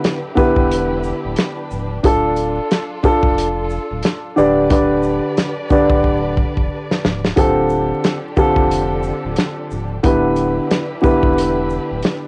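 A dark, boxy baby grand piano sits up front in this moody boom-bap hip-hop excerpt at 90 BPM, its mellow, short-sustained chords moving from Em through Dm, G/D and Fadd9/D to Em/D, with cassette tape coloring its tone. A soul drum kit with a fat snare, tight kick, hi-hat and shaker swings on the 16ths in a tight, pumping room, breaking into a fill from 6.0 to 7.4 seconds. Beneath it, a round sine sub bass with tube saturation enters at 0.6 seconds, while a studio string section holds smooth, bowed chords with vibrato and portamento, all under vinyl crackle and a rolled-off, lo-fi home-cassette sound.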